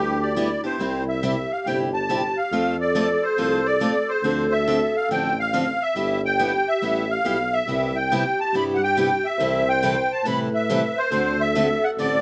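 A moderate studio reverb wraps this short cut from a longer piece, with the band heard playing live together in one room. It is a playful, lively acoustic string swing number in C major at 139 BPM, where a reedy, shimmering musette accordion carries the melody up front, a dark, raspy clarinet with growling, scooped notes adds a second line, and a breathy tuba with light vibrato holds down the bass. A bright picked steel-string guitar, finger squeaks audible, supplies the accompaniment through changes such as Dm7, Cmaj7 and D7, with all four parts sounding throughout the 12.2 seconds.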